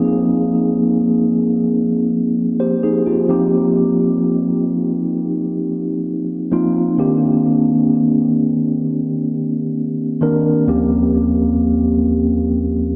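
Moody and longing, this slow, straight-feel R&B passage at 65 BPM features a lone mellow, clean tine electric piano, placed up front and played through its built-in speakers with delay, ranging from Eb2 to C5 across Ab6, Eb69, Cm9 and Eb13 chords, with a new section arriving at 3.3 seconds, the whole passage bathed in a dreamy, lush hall reverb with a 2.6-second decay.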